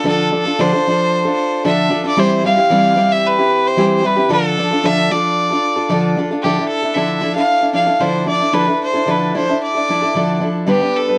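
A straight 4/4 rock pulse at 113 BPM carries this dusty, wistful fragment in D dorian, where a clear, nasal fiddle with light vibrato and a biting edge sings the melody up front over a picked steel-string acoustic guitar moving through Dm, C/E and Dmadd9, all set in a moderate studio room and coloured by the warbly pitch drift of worn old cassette tape.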